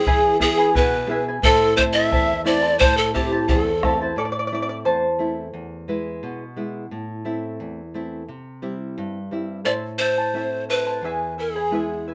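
Over a straight 2/4 pulse, this wistful, melancholic Andean folk excerpt opens with a breathy bamboo pan flute carrying the melody up front, with vibrato and a crisp chiff, while a cane quena traces a second line with a straight tone in the background. A shimmering charango, with its double strings and some octave-doubled courses, and a dark, full-bodied classical nylon-string guitar, fingerpicked, provide accompaniment, and a round bombo beats beneath them until 4.0 seconds. The charango takes a solo at 4.2 seconds, the pan flute returns at 9.7 seconds, and the ensemble sits in a moderate studio reverb.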